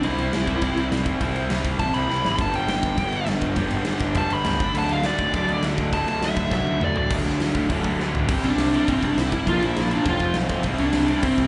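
Heard live through a club PA with a dulled top end and a little club reverb, this rowdy, energetic punk rock fragment charges along at 203 BPM, as a dark, smooth overdriven lead guitar solos for the first 7.1 seconds over a crunchy, double-tracked rhythm riff up front, a fuzzed, picked electric bass and a big acoustic rock kit with punchy kick and medium-tuned snare whose fills land at 2.1 and 6.5 seconds, while the chords move from C, G and D to Bb and F.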